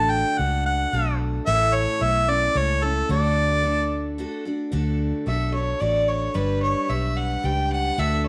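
In a straight 3/4 metre at 111 BPM, this sunny, heartfelt honky-tonk and classic country passage in D major moves through D, A and G chords. A mellow harmonica carries the melody up front until 4.2 seconds, its smooth top and light vibrato giving the tune a tender, classically styled voice. Underneath, a picked steel-string acoustic guitar rings out bright and full-bodied with fresh strings, while a vintage electric bass, foam-muted, round and punchy, keeps a dark, amped pulse close to the listener. At 5.3 seconds a single bowed fiddle takes over as the solo voice, clear and biting yet earthy, with its own touch of vibrato. Moderate spring reverb and a small room ambience lend the whole cut from a longer piece a homespun, intimate glow.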